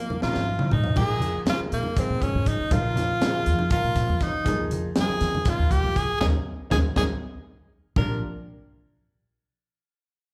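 An edgy, close-miked tenor saxophone leads this intense, slick jazz fusion excerpt in Bb minor, its punchy, scooped phrases and light vibrato riding up front over a brisk 240 BPM count in 7/8. A tight funk drum kit with a high-tuned snare opens with a fill from 0.2 s and returns with another at 6.5 s, just after the band begins hitting accents at 6.2 s, while a thumpy gut-string upright bass and soft-handed, ringing congas drive beneath. A vintage-toned grand piano with long sustain sits in the background, moving from Bb7sus4 to Eb9sus4 within a large studio reverb that gives the sense of a band playing live in one room.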